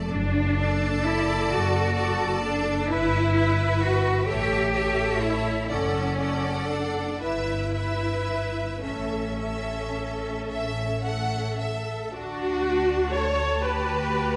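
Classical slow romantic movement for string orchestra in 6/8 with supple rubato, lyrical and serene, cut from a longer piece. A lush, vibrato-rich violin section carries the melody from the background while a clear, intense second violin line sits close beside it, focused violas fill the accompaniment, and smooth, even cellos join woody double basses, which are up front from 0.1 s, to anchor the bass. The bowed ensemble blooms in a moderate scoring-stage reverb, moving through a gently repeating harmonic cycle before settling into a new section at 12.1 s.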